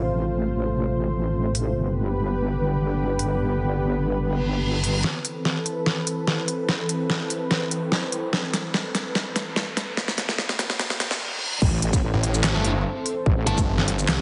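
Heavy wobble dubstep in A minor at 146 BPM with a half-time feel, chaotic and aggressive: a lush, warbling unison pad with chorus and sidechain pumping holds sustained chords throughout, a detuned sawtooth wobble bass plays until 5.0 s and returns at the drop at 11.6 s, a tape-toned dubstep kit with a deep snare, crisp hats, handclaps, shaker and crash comes in at 1.5 s, background reverse cymbals, a riser and an impact carry a filter-swept build-up and drum fill, and the drop brings a punchy layered electronic kick, a snarling, growling distorted saw bass and brief sludgy overdriven guitar stabs with tape echo, all set in plate reverb with a heavily compressed, radio-like sound.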